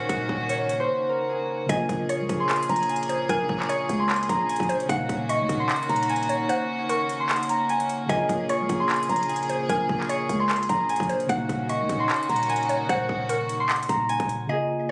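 A half-time trap groove at 150 BPM in 4/4 drives this eerie, dark hip hop piece in Bb minor, cut from a longer track, with an electronic kit of hard-clipped kick, crisp hi-hats and handclaps that drops out briefly from 0.9 to 1.7 seconds, while the kick alone falls away again from 6.5 to 8.1 seconds. Beneath it, a growling, buzzy 808-style bass with a fast attack and decaying tail holds the low end as the chords move between Ebm7 and Bbm7. Up front, a mellow, ringing concert harp carries the fingerpicked melody, supported by muted, felt-like synth keys that warble softly through chorus and tremolo, and by a studio string section with a reedy, gut-string, period-style tone sustaining bowed chords. At 1.7 seconds a woody, round, mallet-like FM pluck enters with a second line, colored by chorus and digital delay. The whole mix sits in light reverb and studio ambience, compressed and captured on a phone in the room.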